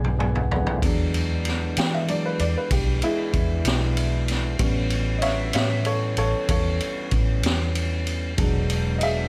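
Slow blues in 12/8 with a straight feel, gritty and soulful, cut from a longer piece. The upright piano carries the lead, a woody, slightly detuned instrument with long sustain that opens with a fill alongside a drum fill before taking a solo from 0.8 seconds onward. Beneath it, a tonewheel organ holds clean, sustained chords through a slow rotary speaker, sitting furthest back in the blend. A vintage muted fingered electric bass gives a dark, round, foam-muted low end, while the raw garage drum kit sits up front with a boomy kick, high-tuned snare, ride cymbal and toms, its saturated sound rolled off at the top as if played in a small room. The harmony moves from E9 to A9 at 4.6 seconds and back to E9, all wrapped in a light reverb.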